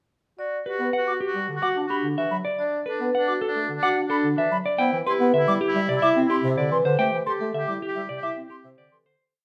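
A straight, propulsive 4/4 pulse at 109 BPM drives this brief, hypnotic minimalist piece in G major, built from repeated short cells over a Gmaj7, Bm7, Cmaj7 and D7sus4 progression. A dark, fingered clean electric guitar carries the melody up front, while a ringing, metallic vibraphone played with soft mallets and its motor off spins arpeggios alongside an airy silver flute with vibrato and a soft attack. A mellow bass clarinet holds the accompaniment and a clear oboe adds a second line of pulsing notes that swell and fade, all bathed in a wet, large studio reverb before the piece fades out from 7.0 s to its close at 9.2 s.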